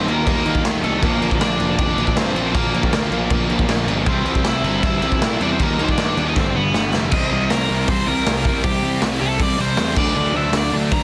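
The raw garage drum kit sits up front, its boomy kick, medium-tuned snare, hi-hat and crash cymbal sounding saturated and gritty in a small, pumping room with a rolled-off top. This is an energetic, rebellious punk rock excerpt at 158 BPM in a straight 4/4, cut from a longer piece. A bright, crunchy overdriven guitar carries the melody from A3 to Bb5, while three guitars stack riffs beneath it: a very quiet, double-tracked high-gain guitar, plus a sludgy distorted guitar and an overdriven electric guitar sitting in the background with a warm, picked tone. A growly fuzz bass, direct and amped, rumbles between F1 and Bb2 through chords moving from Eb and Bb to C and a G7. After a drum fill at 6.3 seconds, the overdriven electric guitar takes a solo from 7.1 seconds as the music shifts into C lydian, all in a dry, dense and heavily limited modern mix.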